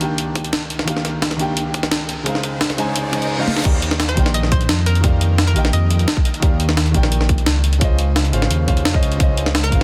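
A straight 4/4 groove drives this short, uplifting slice of liquid drum and bass, with a gritty, pitched-up jungle sampler-style kit of crash, hi-hat, medium-tuned snare and toms sitting up front from the start, joined at 0.4 seconds by a tight, layered electronic kick. A warm concert grand piano with short sustain and tape echo carries the accompaniment, moving between Ebmaj9 and Dbmaj9 chords through a build-up lifted by a very quiet riser and reverse cymbal, capped by a drum fill at 3.5 seconds. At 3.7 seconds the drop arrives as a dark, detuned saw bass enters, deep and rumbling with a saturated, beating tone. A hollow, bouncy square-wave pluck with chorus and digital delay adds a bright melodic figure in the drop, returning briefly at the very end. The mix is dense and heavily limited, with only a light reverb around the parts.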